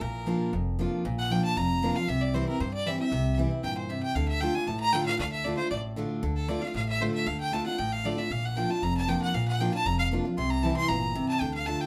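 A fiddle solo, a picked steel-string acoustic guitar and an upright bass all start together in this driving, rustic bluegrass excerpt, played straight in 4/4 at a brisk 232 BPM in D minor. The fiddle carries the melody up front, one player bowing with a clear, intense tone and light vibrato as it ranges from A4 up to C6. Beside it, the dreadnought guitar picks a full-bodied accompaniment on old strings, its sound woody and near. Underneath, the plucked upright bass adds a growly, acoustic low end and drops out at 11.7 seconds, just before the fiddle and guitar close at 11.9. The harmony moves through Bb, C and Dm, then returns to Bb and C, and a moderate studio reverb gives the trio a sense of room.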